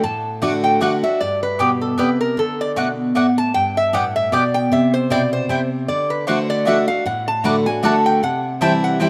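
A metallic, nasal lap resonator guitar played with fingerpicks and a steel bar takes the solo from the start, up front beside a bright, freshly strung dreadnought acoustic guitar picking the accompaniment, in a joyful, rustic bluegrass tune at 154 BPM in 3/4 with a swung eighth-note feel. From 0.4 seconds a woody, double-strung mandolin adds picked stabs, sitting a little further back as the chords move through D, G and C in D mixolydian. The sound is a rough home demo with light reverb and a small-room ambience, and the passage is cut from a longer piece.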